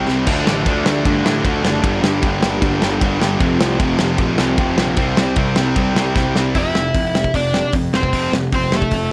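This rebellious, upbeat punk rock cut opens with a stack of overdriven, picked guitar riffs over a growly fuzz bass, while a loose acoustic drum kit kicks in with a fill at 0.1 seconds. One guitar riff, double-tracked and very quiet, sits beneath a bright distorted guitar and a sludgy, warm one, both kept in the background. Up front, the small-room drums pair dark cymbals and a tight kick with a medium-tuned snare, driving a straight 4/4 through a Dm, Gm, F and C progression. After another drum fill, a crunchy lead guitar steps forward at 6.6 seconds to carry the melody over the F chord, alongside the distorted guitar and the bass. The dry mix has little reverb, and the piece is lifted from a longer song.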